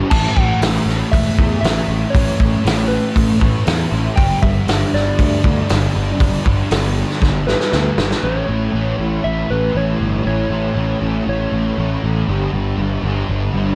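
A loose indie drum kit sets a straight, steady rock pulse in 4/4, with a fat snare, a punchy kick, crash and hi-hat sitting up front until a drum fill from 7.2 seconds carries it out at 8.2 seconds. This piece of shoegaze and dream pop, cut from a longer work, feels dreamy and wistful. A thick, dark fuzz guitar, double-tracked and spread with ensemble chorus, drives a low riff throughout, while an overdriven picked electric bass adds punchy fuzz beneath it. Above them, a soft struck synth lead with a round, warbling, vintage FM tone plays a gentle, keys-like melody with chorus and slapback echo. The production is dark and warm in a small room ambience, and the drums have a saturated, gritty character with a rolled-off top.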